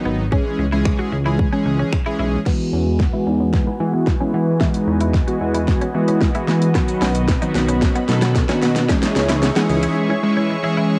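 Dance-pop in E major at 112 BPM in a straight 4/4, this summery, euphoric excerpt is cut from a longer piece and has the character of a home cassette recording set in a digital ambience. A fat, detuned sawtooth polysynth sits up front with chorus, sidechain pumping and a low-pass filter, while a chorused synth bass with a glossy, retro pulse-and-saw tone pumps beneath it. A punchy, layered pop drum kit with a fat snare, crash, finger snaps, hi-hat and shaker adds tape colour, and a clean, twangy twelve-string electric guitar riff sits in the background. At 2.5 seconds the harmony moves from C#m to Eadd9, then B and back to C#m, as an airy, evolving resonant pad enters on sustained chords with a filter sweep and a drum fill drives a long build-up. A very quiet electronic riser joins at 5.5 seconds, adding to the build as the section runs to its cut-off.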